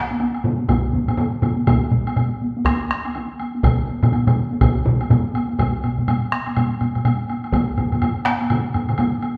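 Driving and powerful, this short cut from a longer Japanese traditional taiko piece moves in 4/4 with a swung sixteenth-note feel, played live in one room and bathed in a wet, large studio reverb. Three layers of taiko ensemble struck with heavy sticks form the core, two of them compressed and saturated with one pushed up front, while the third carries a small-room sound, and a woody, vintage, band-limited woodblock sits quietly beneath. A close, up-front solo taiko enters at 1.7 s and stops at 7.2 s, and the music moves into a new section at 5.6 s.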